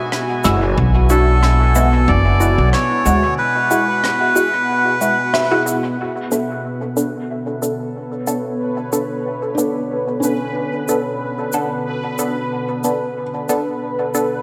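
Hazy and meditative, this ambient dub excerpt at 92 BPM in B dorian drifts from Eadd9 to Bm7 over a warbling, nostalgic tape-like pad. Dark felt-muted upright piano arpeggios and deep filtered chord stabs, both carrying dub echo, take on filter sweeps from 6.0 s. Rim click and shaker sit alongside a woody pizzicato upright bass up front until 3.3 s, and a punchy overdriven electronic kick plays briefly in the background. A reedy, breathy melodica melody enters, and later a bubbling, resonant stepped-filter texture arrives, all within a moderate concert hall reverb.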